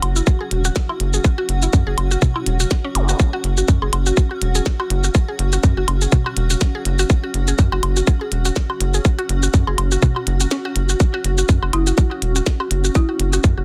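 Opening on a rubbery, nasal square-wave bass pumping against a granular cloud pad, clicky hats, a tiny overdriven snare and dry woodblock and toms with digital delay, this quirky, sparse minimal techno excerpt at 123 BPM with a 16th-note swing soon adds a woody, phased synth pluck riff, a tight, overdriven kick up front that drops out from 10.5 to 11.0 seconds, a brief electronic zap, and a rustic folk marimba note with medium hard mallets in the background from 11.7 seconds, all in a dense, heavily limited, dry mix.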